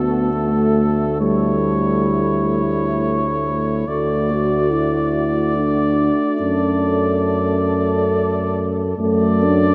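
Classical brass-band hymn in D major, moving at 69 BPM in a flexible, rubato 3/4 with a warm, lyrical mood. A punchy cornet with light vibrato carries the melody over a French horn section's second line, while a dark, close-miked euphonium and a mellow, smooth-topped trombone in the background fill in the accompaniment above an up-front tuba bass. This brief fragment of a longer piece rests on D and A7/D harmonies and is bathed in the long, wet reverb of a vast cathedral, its highs rolled off.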